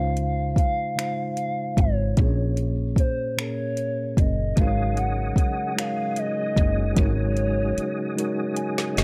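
Slow six-eight R&B with a tender, intimate mood, where a gliding portamento lead sings over mellow tine electric piano, a growly, hollow-sounding fretless bass and an up-front drum kit of finger snaps, soft kick, woody snare and metallic hats, with a tonewheel organ joining at 4.6 seconds through a fast rotary speaker before drum and electric piano fills close this gritty, dry fragment at 8.2 seconds.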